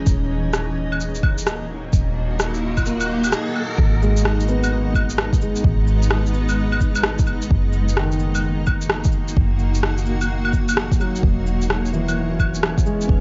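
Nocturnal and ghostly, this short future garage excerpt swings over a deep, tape-warmed electronic kick and an up-front layer of shaker, rim click, claves and cabasa, while a soft, round 808-style bass pumps beneath a felt-muted upright piano with tape echo and a cloudy, evolving granular pad carrying vintage 12-bit grit. A reversed, dreamy texture glows in the background until 3.8 seconds, joined by an electronic riser from 1.3 seconds, then returns at 11.8 seconds as the chords drift from Ebm through Abm and Ebm/Gb to E6. Vinyl crackle and a dulled top end lend the whole mix a faded, after-hours haze.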